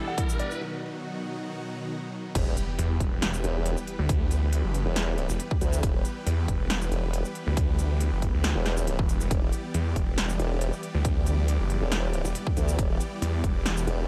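Heavy wobble dubstep in E minor at 138 BPM with a half-time feel, this menacing, aggressive clip is cut from a longer piece and set in a dark digital ambience. It opens on a short build-up where a clear, intimate grand piano with audible action noise and tape echo states a brief melody over huge, lush supersaw chords that pump against the sidechain, while a riser and drum fill run together until 0.6 s. A break follows as the harmony moves from Em7 to B, and the supersaw chords sustain bright and full-bodied through to the end. At 2.4 s the drop lands on Em with an electronic impact, and the formant-sweep wobble bass enters, saturated and up front with chorus and overdrive, soon joined by a snarling, growling distorted saw bass built from detuned unison sawtooth layers with a moving notch. Underneath, a punchy, tape-warm electronic kick sits up front, and a big-room dance kit adds a punchy snare, crisp hi-hats, shaker and crash cymbal with the sound of a small room.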